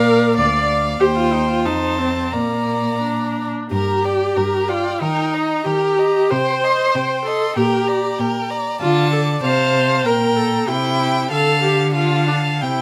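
In a supple, rubato 2/4 at around 83 to 97 BPM, this spirited classical-period string quartet movement, cut from a longer piece, opens in Bb major before turning to G minor at 3.7 s. A dark, intimate first violin sings the melody sul tasto with an airy bow, soft attack and light vibrato, while the second violin and viola, both rich and expressive with vibrato and portamento, carry the inner line and accompaniment. The up-front cello lays down a clear, intense bass with a smooth top, and close, detailed microphones capture the quartet in a moderate recital-hall ambience.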